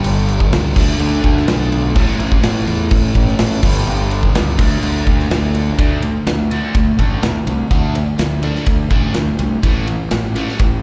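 Classic rock at 125 BPM in a straight 4/4, gritty and swaggering, this short cut from a longer piece is heard as a live gig through the venue's PA with the light reverb of a recital hall, and its power-chord riff moves among G5, D5 and A5 before a second section arrives at 5.8 seconds. A big acoustic rock kit sits up front with a boomy kick, medium-tuned snare, crash and ride, alongside a fuzzy, overdriven fingered electric bass played low. Behind them, two picked electric guitars share the riff: a bright, overdriven semi-hollow guitar colored by phaser and slapback echo, and a sludgy distorted guitar with a warm tone.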